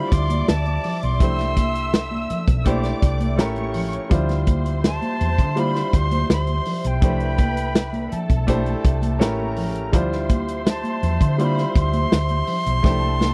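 At a relaxed 82 BPM in straight 4/4, a lush 1970s-style soul groove in D dorian rolls along on a tight, up-front drum kit with a medium-tuned snare and rolled-off top, a round, punchy hollow-body electric bass, and ringing, high-tuned congas sitting in the background, with a drum fill closing things at 12.8 seconds. A breathy, close-miked silver flute carries the silky melody over a polished grand piano, while a veiled, muted string section adds a soft-edged second line and a mellow French horn section holds sustained chords behind them. The harmony cycles through Dm11, C69 and A7b9 in a dry, smooth sound that feels cut from a longer piece.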